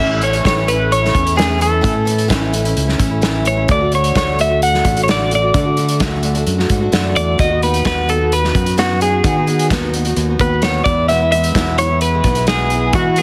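A bright, twangy twelve-string electric guitar with harmonic tremolo carries the melody up front from the start, over a dark, boxy picked archtop acoustic with audible finger squeak and a warm fingered electric bass, while a loose indie drum kit with a tight kick and rolled-off top enters at 0.2 seconds, giving this jangly, hopeful folk rock and heartland rock excerpt a straight, steady drive through A, D, B/D# and E under light reverb and a heavily compressed radio sound.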